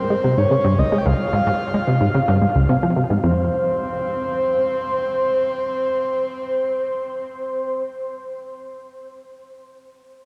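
Ambient, sequencer-driven space music with a mysterious, expansive mood, this short cut pairs a breathy, flute-like synth lead carrying the melody with subtle chorus and delay against a punchy, saturated analog bass riff bathed in lush chorus that drops out at 3.5 seconds, leaving the soft, sustained lead to float alone through a huge, dark reverb until 7.8 seconds.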